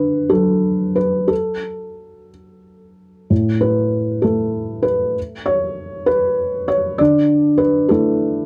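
A dry, close recording in a 1970s studio style, with light reverb, places a felt-muted upright piano up front, its dark, mellow tone softened by thick felt and intimate in character. This short excerpt of neoclassical minimalist piano, cut from a longer piece, drifts in a rubato 6/8 with a hopeful, peaceful mood. The solo piano moves from a D chord through an open, chordless stretch at 3.3 seconds before settling on Dsus2 at 7.0 seconds.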